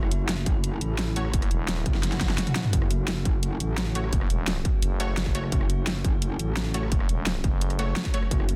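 A straight 4/4 pulse at 172 BPM drives this dark technical drum and bass in F# minor, where a dubstep kit with a huge snare, bright hats, rim clicks and toms sits up front, joined at 0.5 seconds by a distorted, tape-warm electronic kick and broken by a fill around 2.0 seconds as a faint electronic swell rises in the background. A metallic, aggressive wobble bass with chorus and sidechain pumping anchors the low end alongside a thick, growling FM bass, while an eerie, nasal inharmonic drone with 12-bit sampler grit warbles far behind. First heard at 1.2 seconds and returning from 4.0 seconds, bold, punchy orchestra-hit-like sawtooth stabs with dub echo cut through the dense, heavily limited mix, giving this futuristic, mechanical excerpt its bite.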